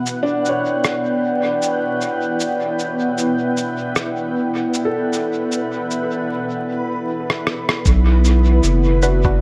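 Vinyl crackle and a light reverb frame this hazy, deep ambient dub excerpt, where a cloudy, detuned granular pad holds sustained chords up front while a felt-muted upright piano plays soft, intimate arpeggios and a muffled, sampler-style shaker and rim click sit in dub echo; a drum fill at 7.3 seconds leads into a round analog bass and a thumpy background kick at 7.9 seconds, with a dark, phased sawtooth chord stab arriving at 9.0 seconds.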